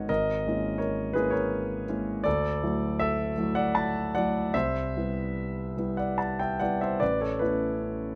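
A concert grand piano opens on a hazy C#m6/G# chord, setting a nocturnal, impressionist mood for this short fragment of a longer classical piece. Played solo in 3/4 with a free, rubato feel at roughly 70-84 BPM, the harmony drifts through Dadd9 and Cmaj7 before settling on Aadd9 near 7.0 seconds. The instrument sounds warm, intimate and up front, its deep bass and long sustain letting each chord bloom, while the noise of the action stays audible. Close, detailed miking gives the tone a polished presence, and light reverb adds a gentle halo around it. The whole passage lasts just over eight seconds, ranging from the low bass register up into the upper middle of the keyboard.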